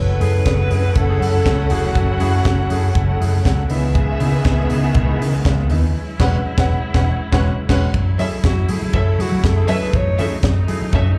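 Glamorous and driving, this disco excerpt at 120 BPM in F# dorian opens with a breathy, close-miked alto saxophone melody with scooped notes that returns at 8.5 seconds. A dark, woody string section carries a second line, a clear string section holds sustained chords, and an intimate grand piano with audible action noise accompanies in the background, while a round, foam-muted vintage bass and a tight funk kit with a high-tuned snare sit up front. The band hits accents from 5.9 to 7.9 seconds over chords moving from F#m7 through C#m9 and E69, all heard as a live gig through a club PA.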